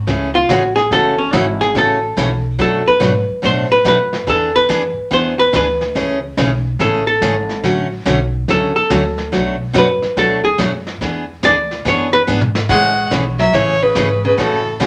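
Heard in a small, reverberant room, this playful western swing excerpt in A major moves at 143 BPM, with a hollow-body archtop guitar soloing clean and dark up front over a bright, full-bodied picked dreadnought acoustic with finger squeak, a thumpy gut-string upright bass, and a gritty vintage brush kit sitting in the background, until a drum fill at 12.3 seconds ushers in a close, woody bowed fiddle carrying the melody with light vibrato and portamento from 12.7 seconds.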